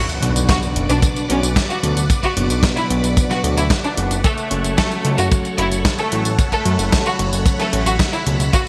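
Italo disco at 112 BPM, bittersweet and danceable, moving from B minor to F-sharp minor in this short cut from a longer piece, where a fat, detuned analog bass with tube saturation and a punchy, up-front acoustic kick entering at 0.5 s drive a sampler-style drum machine of hi-hat, snare and tambourine under gated reverb, while barky overdriven tine electric piano stabs with lush chorus sit in the background, a swirling phased string machine holds slow-attack chords, a floating sul tasto violin section carries the melody through digital delay, and a very quiet electronic impact opens the first 2.1 seconds, all set in a lush hall with bright 1980s-style digital sheen and vinyl crackle.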